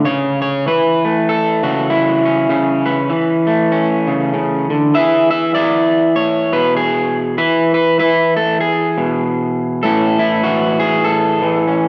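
A gently swung 98 BPM folk groove in 4/4 carries this hopeful, pastoral A major excerpt from a longer piece, where a lone electric guitar through a small old amp, twangy, slightly broken-up and picked, sits up front across 0.0 to 11.9 seconds, spanning A2 to E5 over chords moving from A/C# to E and back to A at 9.8 seconds as a new section begins, all bathed in a moderate concert hall reverb.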